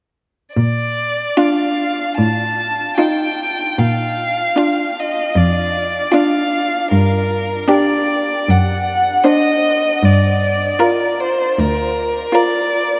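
Classical chamber music: a slow, romantic movement for string quartet in Bb major, taken from a longer piece, moving at 77 BPM in 4/4 with a lyrical, serene rubato feel. The first violin and cello begin together at 0.6 seconds, the violin carrying an expressive melody between Bb4 and A5 with vibrato and portamento, sounding distant yet up front, while the cello anchors a smooth, even bass line from D2 to Bb2, close and prominent. At 1.4 seconds the second violin enters in the background with a rich, even second line around F4 to C5, joined by the viola's clear, focused accompaniment between D4 and F4, both players bowing with vibrato. The harmony moves from Bb through F7/A and back to Bb before turning toward G minor by way of D7/F#, settling on Gm7. The whole quartet sits in a vast, echoing cathedral reverb with a long, wet tail, and the melody lingers until 13.0 seconds.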